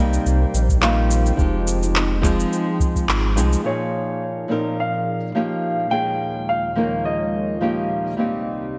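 Warm and wistful, this sunset chillout excerpt pairs an up-front, thumb-plucked flamenco guitar with finger squeak and digital delay against a silky, chorused string machine, while a round sine sub bass, overdriven electronic cabasa and handclaps, and a dry, deep electronic kick carry the opening until they fall away by 3.6 seconds, leaving a dark baby grand piano with delay and long sustain to sing a mellow melody from 3.7 seconds over lush extended chords.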